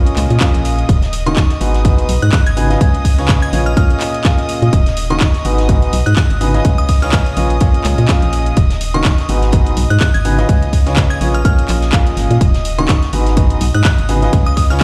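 An upright piano with audible action noise plays a woody riff over sustained, earthy violin chords and a hollow, organ-like FM bass with tube saturation, all pumping to the sidechain as a punchy, overdriven electronic kick and a house kit of handclaps and bright hats drive this soulful, energetic piano house at 125 BPM with a light 16th-note swing. A very quiet acoustic kit adds hi-hat, ride and snare from the start, and from 1.3 seconds a glassy synth bell with chorus and dub echo sits in the background. The chords cycle through Bbm7, Ebm7, Abm7 and Db7, and the mix sounds like it is played on a big sound system in a bare room with large studio reverb.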